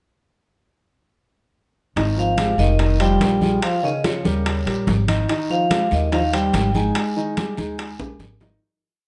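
A lively, danceable Afro-Cuban jazz piece in straight 4/4 at 144 BPM in Ab major, built on an up-front, woody pizzicato upright bass playing a tumbao that anticipates the chords, a concert grand piano with deep bass laying down a montuno in octaves, and a percussion section of bright congas with slaps and open strokes, round low-tuned bongos in steady eighths with hand bell, ringing metal-shell timbales with shell pattern and bell, and a raspy, saturated guiro. From 2.2 s a dark, metallic vibraphone with medium hard mallets and motor off carries a smooth, motif-based melody in plate reverb, while a mellow, breathy trombone adds a jazz-style second line with scooped notes and octave doubling. Over a short Fm7, Bbm7, Eb7 progression resolving to Abmaj7, the whole piece sits in moderate studio reverb and fades out from 7.0 s, closing on a drum fill at 8.0 s.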